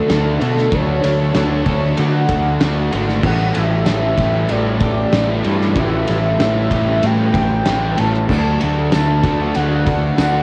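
Wistful and hazy, this excerpt of shoegaze-leaning dream pop rock moves at a straight 95 BPM in D major, drifting from Dmaj7 to A7sus4 and settling on D, with a velvety synth lead carrying the melody through chorus, cassette-tape saturation and analog delay above a faint, blurred granular cloud pad. Beneath it, a very quiet clean electric guitar picks dark arpeggios while three overdriven semi-hollow guitars, one dark, one gently tape-worn, one bright and double-tracked in the background, lay down riffs over an up-front, punchy fuzz bass. A loose indie kit with a fat snare, dark cymbals and a rolled-off top pumps in the small room of a home cassette recording, and a distant, jingly tambourine joins at 8.3 s.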